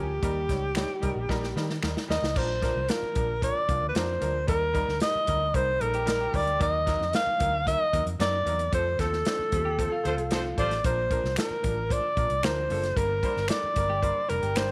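A light studio reverb frames this joyful, danceable slice of uptempo 1960s-style soul in Bb major at 113 BPM, where a breathy, whispered alto saxophone sings the melody up front over a worn, slightly detuned upright piano, a dark, foam-muted electric bass and an airy, polished big-band drum kit, with close, dry finger snaps in the background, a slightly broken-up electric guitar riff entering at 5.9 s, a distant horn section adding a brief second line at 10.0 s during a band accent, and chords moving from Eb through Ebm and F before returning to Bb.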